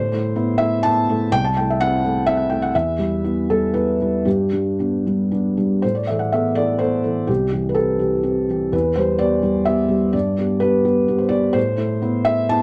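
A moderate studio reverb surrounds this melancholic, intimate fragment of neoclassical minimalist piano in a rubato triple metre, where a solo felt-muted upright piano, dark and up front with audible action noise, spans C2 to A5 through a cycle of Amadd9, C6, Em and G that starts again at 5.8 seconds and returns to Amadd9 at 11.6 seconds.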